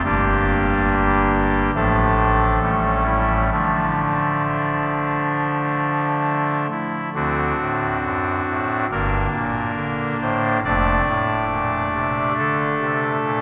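A solo pipe organ, voiced on a soft reed oboe stop with a baroque character, sits up front in this short classical chorale-style passage cut from a longer piece. The mood is solemn and dark, set in D minor at a slow 68 BPM in 4/4, with uneven, rubato pacing that lets the phrases breathe. The organ spans a broad range from F1 up to D5, its reedy oboe color carrying the chorale lines over deep bass notes. The harmony moves from Gm through Dm/A and A7 to settle on Dm, then a second section beginning at 7.2 seconds turns through D7 and Gm before resting on Dm/F. A cavernous cathedral reverb with a long tail of 5.2 seconds surrounds the instrument, giving the performance a grave, spacious atmosphere.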